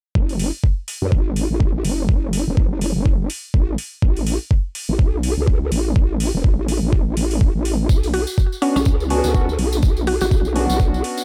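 A nasal, resonant wobble bass and a knocking, tape-warm electronic kick open this swaggering, gritty bass house excerpt at 0.2 seconds, with metallic electronic hi-hats joining almost at once. The groove runs at 124 BPM in 4/4 with a 58% swing on the sixteenths, set in F# minor, and the bass's vowel-like formant sweep, chorus and tube saturation sit up front with the kick, pumping against it through sidechain compression. The harmony holds on F# minor, drops to an unaccompanied stretch of bass and drums, then moves to B minor add nine at 7.9 seconds, where a jingly tambourine enters. A woody, round, mallet-like FM pluck carries a short melody with chorus and delay from 8.1 seconds, and a hollow, ring-modulated organ stab follows soon after, also pumping and trailed by delay. The mix is dry and close, with little reverb, keeping the dense low end punchy and direct.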